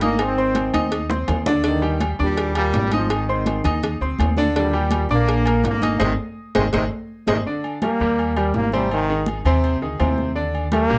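A sunny, danceable salsa groove in Eb major at 165 BPM opens with a trombone section carrying the melody up front over a brilliant, slightly worn concert grand piano and a woody, dark pizzicato upright bass, all moving between Ab and Ebmaj7 chords. Underneath sit high-tuned congas, ringing agogo bells and timbales, and round, dry cowbell and bongos in a light reverb, with drum fills and a band accent leading up to the point where the section and the cowbell and bongos stop at 7.4 s. From 7.8 s a punchy, close-miked solo trombone with vibrato takes the lead until the cut at 11.0 s.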